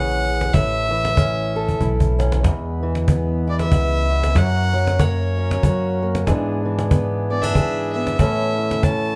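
A nasal, gut-string fiddle carries the gentle, hopeful melody of this acoustic folk piece, cut from a longer performance, in a swung 3/4 at 94 BPM in E mixolydian. It is backed by an up-front fingerpicked archtop guitar with audible finger squeak, a dark, woody pizzicato upright bass, and a cajon with faint snares that plays a fill from 1.6 to 2.4 seconds. A mellow, boxy accordion then enters in the background at 2.4 seconds with sustained chords as the harmony moves from C#m and A toward E, F# and a closing Aadd9, all set in a moderate studio reverb.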